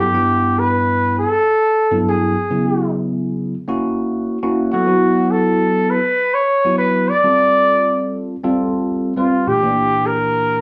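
A mellow trumpet carries the melody from the first moment, its light vibrato and scooped notes giving the solo a bright, soaring jazz voice that sounds both up front and roomy, as if heard at a slight distance. Alongside it, a clean tine electric piano, also up front, plays accompaniment through a combo amp, colored by a phaser and, like the trumpet, a slapback echo. The two parts play together for the full 10.6 seconds of this excerpt, cut from a longer piece. At a straight 101 BPM in 4/4 and set in G lydian, the harmony moves from G69 through C#m7, F#7 and B5, then to F69 at 7.1 seconds and Bb6 at 9.5 seconds. The sound is that of a live gig heard through the venue's PA, with moderate club reverb, club ambience and a dulled top end.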